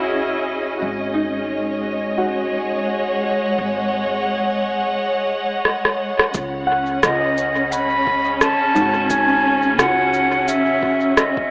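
Hazy and spacious, this ambient dub excerpt at 87 BPM with a swung 16th feel opens on lush, bowed dark strings, thumb-plucked ringing harp arpeggios with dub echo, thumpy pizzicato upright bass with tube saturation and a bright, bubbling stepped-filter texture in the background that drops out at 5.0 s; an up-front electronic rim click and cabasa enter with a fill at 5.7 s, a soft electronic kick joins them, and an airy wooden flute carries the melody from 7.0 s, all over C#madd9 and G#7sus4 chords, steeped in wet spring reverb with a lo-fi AM radio colour.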